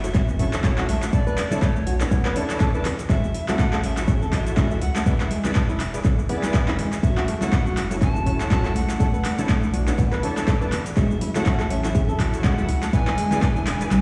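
Hypnotic and warm, this afro house excerpt at 122 BPM swings its sixteenths over a looping F#m7, Bm11, A6, E7 progression, tuned slightly below standard pitch, with an up-front, deep electronic kick anchoring a produced afro-pop kit of metallic hi-hats, handclaps, cabasa and toms, plus bright, thin-skinned congas sitting in the background. A round sine sub bass and fingerpicked acoustic flamenco guitar arpeggios pump with the sidechain, while a gritty, overdriven tonewheel organ adds background stabs through chorus vibrato, a slow rotary speaker and tape echo. An airy, reedy, polished pan flute carries the melody with vibrato and echo, a very quiet electronic impact marks the opening second, and a smooth sawtooth analog pad enters at 7.0 seconds with sustained chords, all heard as if played on a big sound system in a bare room with large studio reverb.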